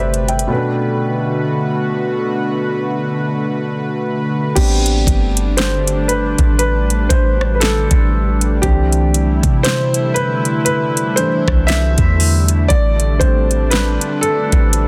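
A warm baby grand piano, intimate and up front with audible action noise, carries this sensual, late-night contemporary R&B excerpt at a slow 59 BPM with a swung feel in A dorian, stepping into a solo at 4.6 seconds as the chords move from Am11 through Cmaj7 to Am7. Beneath it, a lush, detuned sawtooth pad with chorus holds sustained chords, while a deep, boomy 808-style bass anchors the low end. The electronic drum kit brings a knocking kick, metallic hats, rim clicks, crashes and a fat, overdriven snare with soft clipping, all in a dry, dense, heavily limited modern mix.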